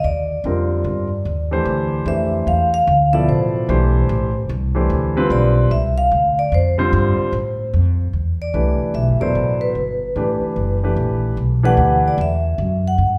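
A close-miked vibraphone, struck with medium mallets, carries the melody in a metallic, ringing voice with a fast motor vibrato, sitting dry, full and up front in this cool, searching swing jazz passage cut from a longer performance. Beneath it, a plucked upright bass on steel strings gives a woody, growly bottom end and is also placed near the listener. A concert grand piano enters at 0.5 s with warm accompaniment and deep bass, dropping out at 12.2 s. The harmony moves from Cm9 to Dm9, then shifts to Em11 at 8.1 s as a new section begins. The group plays in a reverberant recital hall or church that adds a lingering wet tail around the swung eighths.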